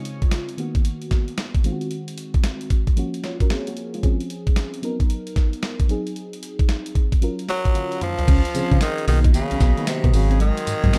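A raspy tenor saxophone solo enters at 7.5 s over a flirty, bouncy new jack swing R&B groove, built on a dreamy, filter-swept FM electric piano with a soft pad layer, an up-front, thumpy sampler-style drum kit with tambourine that fills just before the shift at 8.3 s, and then a round FM bass, a clean, mellow electric guitar riff and a warbling unison pad tucked in the background, all in a digital ambience.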